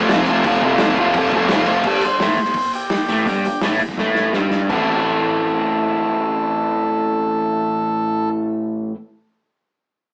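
Menacing and swaggering, this garage rock fragment in A minor at 169 BPM sets a crunchy, double-tracked overdriven guitar riff up front over a growling, overdriven picked bass in the background, while a muffled, lo-fi vintage drum kit with dark cymbals plays from the start, rolls into a fill at 4.0 seconds and stops at 4.8, and a buzzy combo organ melody with spring reverb enters at 1.9 seconds, the whole cut heard as a rough rehearsal-room recording with a small-speaker sound.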